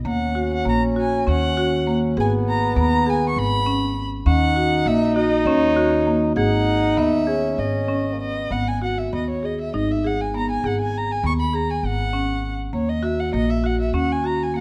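This contemporary chamber piece moves in an uneven 7/8 metre with a straight, restless and hypnotic feel, and it is cut from a longer work. A pizzicato upright bass with steel strings sits up front, woody and dark in its low register. A single bowed violin carries the melody, its tone shadowed and smooth on top, with vibrato. Underneath, a marimba played with medium mallets on rosewood bars spins arpeggios with a woody glow. A solo French horn in classical style adds a mellow second line until 8.5 seconds, when the music moves into a new section and the strings and marimba continue on their own. The sound is close and detailed, with light reverb.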